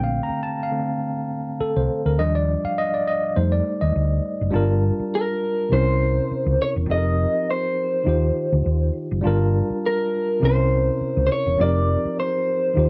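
Romantic and warm, this fragment of lush 1970s-style soul rests on a worn, slightly out-of-tune tine electric piano with a cassette-tape tone, heard up front through its built-in speakers beside a dark, round hollow-body bass played with the fingers. At 5.2 seconds a picked electric guitar enters with the melody through a small old amp, slightly broken-up and compressed, colored by phaser and tape. Gently swung sixteenths and lightly reverberant home-cassette sound frame chords that move from Bbmaj9 through Gm9 and C7b9 to a suspended F7sus4.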